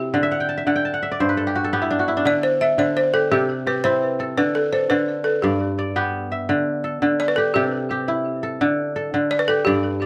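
A mellow, ringing kora opens this joyful, hypnotic West African traditional piece, fingerpicked arpeggios up front and a fill running from 0.2 to 2.3 seconds, at 113 BPM in a straight 12/8 feel in D mixolydian. At 2.3 seconds a woody, buzzing balafon enters, struck with hard rubber mallets and touched with tape echo, carrying the melody over a cycling G, D5 and C progression. Close, detailed microphones and light reverb keep both instruments present in this short cut from a longer piece.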